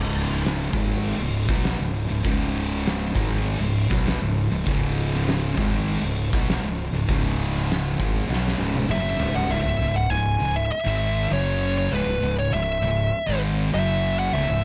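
This dry excerpt of brooding, ominous stoner and doom metal moves at 99 BPM in a straight 4/4, rooted in C# minor. Two thick fuzz guitars sit in the background playing the riff, one with a warm tone and the other dark, while a very quiet, bright fuzz guitar, double-tracked and compressed, adds an extra layer to the same figure. Underneath, a fingered electric bass growls with punchy, overdriven fuzz. An oversized, low-tuned acoustic drum kit sits up front with a gritty, saturated, pumping room sound, a fat snare and a boomy kick; it plays a fill from 8.3 seconds and drops out at 9.5 seconds. A fuzz lead guitar enters up front at 8.9 seconds with a slapback echo, carrying the melody high above the riff as the harmony moves between C# minor and F# power chords.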